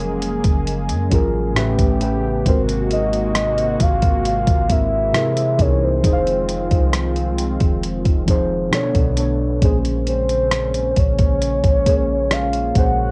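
A hazy, cassette-worn sound with light reverb opens this late-night contemporary R&B excerpt, a slow 67 BPM groove in Bb minor that carries a mood of quiet longing. Up front, a gritty, compressed sampler-style drum kit of thumpy kick, hi-hat and rim click sits heavily in the mix, its tape-soaked tone re-recorded in a large room. Beneath it, a deep, boomy 808-style bass with a sine core and a noise layer gives the low end a mellow, decaying weight. Muted, felt-like synth keys add intimate, dark accompaniment, stepping forward with a brief fill between 1.1 and 2.5 seconds, while a smooth, warbling vintage pad with a detuned sawtooth edge and lush chorus holds the chords in a soft wash. Over the top, a full, round octave-layered synth lead sings the melody with vibrato and a sub-octave beneath it, moving through rich harmony from Gbmaj9 to a closing Bbm9.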